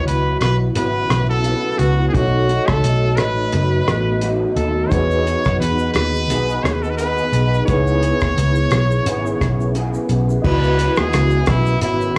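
Wistful and lonely, this lightly swung indie bedroom-pop fragment sets a brilliant trumpet melody with scooped notes up front over a slightly broken-up electric guitar with ensemble chorus, a reedy electric piano pulsing with fast tremolo in the background, a round, foam-muted picked bass and a dry, cloth-damped drum kit with dark cymbals, the mix carrying cassette-tape texture and small-room reverb as the trumpet takes a solo at 10.4 seconds.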